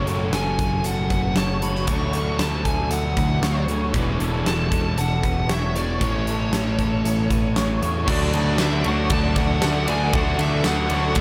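A dreamy, wistful shoegaze and dream pop excerpt at 116 BPM opens with a thick, dark fuzz guitar riff, a very quiet raw garage guitar, lo-fi chorused arpeggios from a small old amp and a growling overdriven picked bass. A huge arena drum kit with a fat snare, punchy kick and bright cymbals sits up front while a smooth lead guitar sings its delayed melody high over chords moving from F#m through Dmaj7 and E7sus4 to A, all in a mix soaked in church-like reverb. At 8.1 seconds the music shifts to D as a vintage, soft-attack organ-string pad and a double-tracked distorted guitar join, with a jingly, band-limited tambourine entering at 8.6 seconds.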